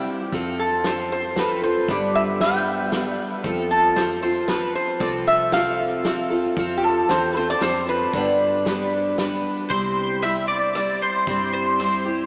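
A straight, unhurried three-four sway carries this short fragment of honky-tonk and classic country, easygoing and nostalgic in mood. A lap resonator guitar, played with fingerpicks and a steel bar, takes the opening solo up front with a metallic, nasal slide voice touched by analog chorus. Beneath it, a bright picked steel-string acoustic guitar carries the accompaniment in a lush chorus, while a dark, foam-muted electric bass sits round and low. A natural country drum kit, recorded in a small room, adds hi-hat, ride cymbal, rim clicks, a medium-tuned snare and a punchy kick. The harmony moves between F and G until the resonator stops at 9.1 seconds, and at 9.7 seconds the music lands on C as a twangy, slightly broken-up electric guitar through a small old amp steps forward with the compressed melody, thickened by ensemble chorus. The whole mix is soaked in a long cathedral reverb, giving it a dreamy, small-speaker quality.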